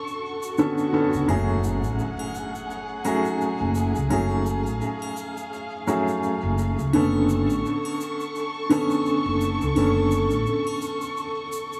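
A small-room ambience, light reverb and vinyl crackle wrap this echo-heavy, cinematic trip hop fragment, cut from a longer piece and set at 85 BPM in 4/4 with a swung sixteenth-note feel in F# harmonic minor. A felt-muted upright piano sits up front, its mellow, intimate tone and short sustain colored by tremolo, 12-bit sampler grit and tape echo, with a filter sweep opening the first 1.3 seconds. Behind it, a distant, bowed chamber string section holds dark sustained chords with expressive vibrato and a similar sampler grit. An electronic swell rises in the background and lands as an impact at 1.3 seconds, when the harmony moves from Bm9 to F#madd9 and later to Bm9/F#. A woody, thumpy pizzicato upright bass on gut strings enters at 1.1 seconds and stays up front, while a close, dry egg shaker, triangle and group handclap tick along quietly through an analog delay, giving the whole a hypnotic pull.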